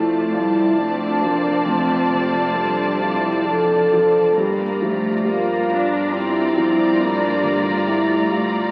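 Uplifting and moving, this short fragment of a cinematic film score unfolds in a flowing three-beat rubato. A mellow French horn section carries sustained chords and sits most prominently in the blend, holding until 8.3 seconds. Above it, a clear, focused violin section plays a second line with vibrato, while a rich viola section and a smooth cello section fill the middle with bowed, even accompaniment and bass. A concert grand piano adds intimate accompaniment with long sustain and audible action noise, and a distant double bass section plays quietly in the background. The harmony moves from F6 to Gm7 at 4.4 seconds, and the whole piece sits in the resonant wash of a recital hall, colored by the crackle of a very old 78 rpm record.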